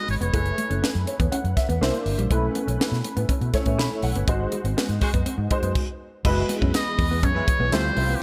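A buzzy, brilliant trumpet with a metal mute leads this slick, urban slice of polished 1980s jazz-funk pop, playing the melody up front with light vibrato and scooped notes, first briefly at the start and then again from 6.8 seconds. At 122 BPM in a straight 4/4, a tight funk drum kit with a punchy kick, high-tuned snare and bright cymbals drives the groove under gated reverb, while a dark, round, foam-muted fingered electric bass holds the low end. A baby grand piano with audible action noise and an ensemble chorus sits up front in the accompaniment, and a clean, compressed electric guitar plays a riff in the background with subtle chorus. A smooth, tight horn section adds a second line with delay from 5.0 seconds, and a shimmering, sawtooth string machine with violins enters at 6.2 seconds with slow-attack sustained chords. The band hits accents together from 4.3 seconds, closing with a brief stop, and the harmony moves through lush chords such as F#m11, G#7 and Dm11 in this passage cut from a longer piece.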